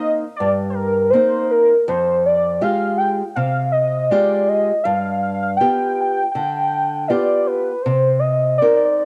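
An Italian folk serenade, wistful and romantic, in which a velvety, detuned synth lead carries the melody up front, its sustained tone colored by chorus, vibrato and portamento. Beneath it, a small, fingerpicked nylon-string guitar plays the accompaniment through Cm7, Fmadd9 and G7 before returning to Cm7. Both parts carry a cassette-tape grain, set in light reverb and the ambience of a small room, like a home recording cut from a longer piece.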